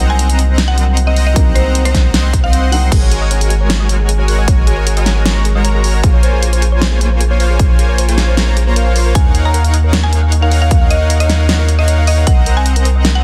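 Emotional and lush, this future bass drop runs at 154 BPM in a half-time feel, with a saturated, thick triangle sub bass up front under a smooth, detuned supersaw riff and a big-room drum kit whose huge snare and crash are joined by a punchy layered kick from 1.4 seconds. A dark, felt-muted upright piano with audible action noise sits in the background until 2.9 seconds, when a tine-like, thumb-piano-like pluck takes up gentle arpeggios, while a woody, round mallet-like pluck carries the melody at the start and returns at 9.2 seconds. Chords move from Cm7b5 through Ab9sus4, Bbm9 and Ebm9, with sidechain pumping and digital delay on the supersaw, plucks and piano, chorus on the plucks, and a dense, heavily limited, mostly dry mix in this passage cut from a longer piece.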